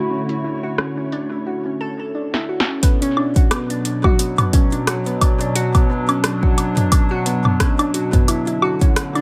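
IDM at 88 BPM with a light 16th-note swing, intricate and glitchy, built on a nostalgic, warbling lo-fi pad holding sustained chords that move from Dmaj9 to Bm and back, while an up-front harp-like synth pluck rings out soft, mellow arpeggios with chorus and tape echo. A grainy, flickering background texture drops out at 1.5 s, and a filter sweep and a drum fill lead into the second section at 2.8 s, where a deep, up-front electronic kick joins. From 0.3 s onward, a punchy, tape-warm analog drum machine with metallic, low-passed hi-hats, rim clicks, snare, toms and woodblock sits in light reverb.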